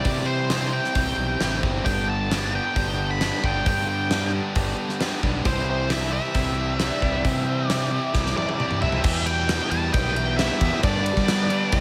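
A gritty, swaggering classic rock excerpt opens at 134 BPM in a straight 4/4, with a dark, fuzzy octave-fuzz lead guitar carrying the melody through distortion and slapback echo. Beneath it, an overdriven semi-hollow guitar with a hollow-body bite and a compressed overdriven electric guitar, sitting in the background, play riffs over chords that move from C to G and back to C. A gated 80s drum kit sits up front, with a fat snare, a tight kick and a mid-forward, rolled-off top in a gated stone room, while a fuzz fingered electric bass growls with overdrive just after the start. At 6.8 seconds a background slide guitar, played with fingerpicks and carrying its own slapback echo, adds a short second line, and a drum fill at 8.1 seconds leads into a new passage. From 9.0 seconds a very quiet, shouting tonewheel organ with key click and slow rotary swirl holds sustained chords over Em and G, all set in a small room ambience.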